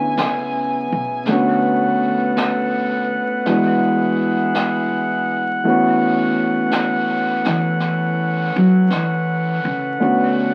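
A slow 55 BPM swing in 4/4 sets a tender, romantic jazz ballad in A major, cut from a longer piece, where a woody pizzicato upright bass takes the solo throughout, framed by up-front grand piano accompaniment with long sustain and a mellow saxophone section holding soft-attack chords with light vibrato. A brushed, high-tuned snare with a rolled-off top enters at 0.2 s, while the harmony moves from B13sus4 through Bm7 and E9 to A69. Moderate studio reverb and the crackle of a very old 78 rpm record give the sound a worn, nostalgic glow.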